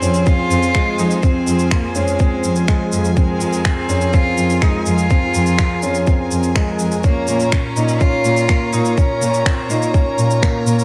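A dreamy mix soaked in plate reverb frames this cinematic, moving piano and strings electronica excerpt at 124 BPM in 4/4, cut from a longer piece and moving from F minor to B-flat minor at 7.0 seconds. A clear, vibrato-laden solo cello carries the melody until 10.2 seconds over sustained chords from a chamber string quartet with a smooth top, while a felt-muted upright piano plays a mellow, intimate riff through analog delay with audible action noise, and a lush, close cello section bowing the bass line pumps with sidechain alongside the quartet. A tight, up-front electronic kick drum enters at 0.3 seconds beside tape-warm electronic shaker and finger snaps re-recorded in a large room.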